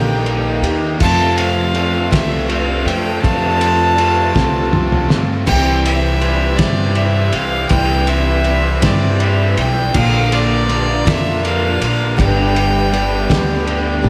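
Warm and hopeful, this slow 6/8 folk rock and heartland rock excerpt at 54 BPM sets a bright, earthy, distant fiddle melody with slapback echo and analog delay over a woody pizzicato upright bass, a boxy swing-style plugged-in acoustic guitar, a crunchy double-tracked overdriven guitar riff, sweet airy accordion chords and a very quiet mellow reed electric piano with fast tremolo, while a muffled, gritty, cloth-damped drum kit with a fat snare enters at 0.3 seconds and plays a fill at 4.4 seconds as the electric piano adds its own, all moving from Eb through F, C, Bb and G inside a lush hall reverb and big arena sound.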